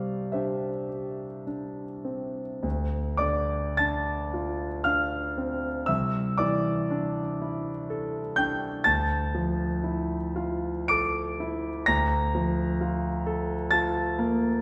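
Rubato phrasing in a slow 3/4, drifting between 49 and 66 BPM, gives this wistful, nocturnal impressionist solo piano piece in D minor its unhurried sway, tuned slightly low to A4 = 438 Hz. A warm concert grand plays alone for the full 14.6 seconds, spanning C2 to D7 with a deep bass, a smooth, vintage tone and an up-front presence. Its harmonies move from Cadd9 through Dm7, C69 and Dmadd9 to Bbmaj7/D, all bathed in a wet recital-hall reverb, in a passage cut from a longer piece.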